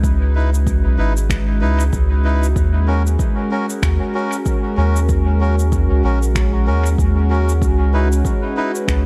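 Ambient dub at 95 BPM in 4/4 with a loose sixteenth-note swing, spacious and deep, cut from a longer piece and moving from C#m9 to D#m7 and back. A smooth, detuned sawtooth pad with chorus holds sustained chords while a round, soft sub bass sits up front, and an overdriven, layered electronic kick drives beneath electronic cabasa and finger snaps that are gritty with overdrive and trail dub echo. A reedy, breathy melodica plays dark stabs from 0.3 seconds, roughened by vintage 12-bit sampler grit and dub echo, all set in light digital reverb.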